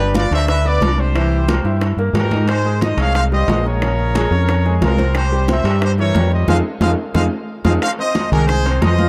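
A punchy, round fingered electric bass sits up front in this fiery, danceable salsa excerpt, while a brilliant trumpet section with light vibrato carries the melody over a bright concert grand piano with a deep low end, moving through chords from G7 and C7 to Abmaj9, Bbm9 and C7b9 before settling on Fm7. Ringing, high-tuned congas and metal-shelled timbales sit in the background, with very quiet, dry, low-tuned bongos close by. A band accent arrives at 6.5 seconds with a drum fill from 7.2 seconds, all within a dark production with light reverb.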